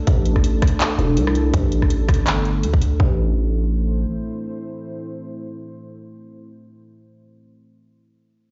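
Half-time drum and bass at 164 BPM in A minor, this heavy, spacious fragment of a longer piece moves with a 16th-note swing over its 4/4 half-time feel. A deep, moody ambient pad of detuned sawtooth unison and a sine sub octave holds sustained chords from the first instant to 6.0 s, its slow attack and long release softened by chorus and built-in reverb and pulled by sidechain pumping. A growling, buzzy 808-style bass sits up front with a saturated fast attack and decaying tail, ranging from E1 to D2 before dropping out at 4.1 s. The tight, layered electronic kick punches hardest in the mix until 3.1 s, alongside a drum kit of handclaps, rim clicks and metallic hats that carries a tape-warm grit from being re-recorded in a small room. The top end is capped at 7.5 kHz, as if played on a big system in a bare room with large studio reverb, and the harmony settles onto A minor at 3.0 s.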